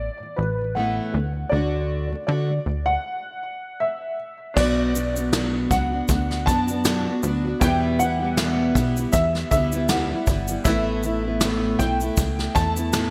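A slow 79 BPM pulse in 4/4 with a light sixteenth-note swing carries this reflective, wistful acoustic pop piece in B minor, which breaks off at 3.0 s before a brushed drum kit with a punchy kick, snare, shaker, crash and gated reverb comes in at 4.6 s. Up front, a woody, intimate upright piano with audible action noise carries the melody through analog chorus and digital delay, over a full-bodied, double-tracked fingerpicked jumbo steel-string guitar and a plucky, funky analog bass, while a brilliant concert grand with short sustain adds faint accompaniment in the background from 4.5 s. Moderate plate reverb and studio ambience frame the bright 1980s-style digital production as the chords move from Asus2 and D into Bm and Em, then back to Asus2.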